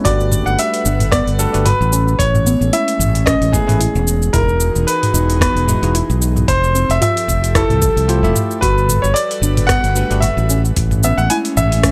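A smooth 112 BPM groove in 4/4, swung at 56% on the sixteenths, drives this sunset chillout excerpt, built on a thumpy, compressed electronic kick with a gritty sampler edge and a roomy re-recorded sound, alongside a tape-tinged electronic R&B kit of metallic hi-hats, rim clicks, shaker and toms. Up front, a fingered electric bass with tube saturation sits low and warm, while a clear, intimate grand piano carries the melody between G#4 and G#5, its action noise audible, its long sustain colored by 12-bit sampler grit and analog delay. A bell-like, bright tine electric piano supplies accompaniment through analog delay until it stops at 10.2 seconds. In the background, a breathy, detuned pad holds slow-blooming chords with chorus and sampler grit, and a soft, dark pluck traces arpeggios with chorus and delay. The smooth harmony moves through Gmaj9, Amaj9, Emaj9 and Fmaj9 before returning to Gmaj9 and Amaj9, all set in a dry, gritty hardware-style recording with a touch of digital ambience.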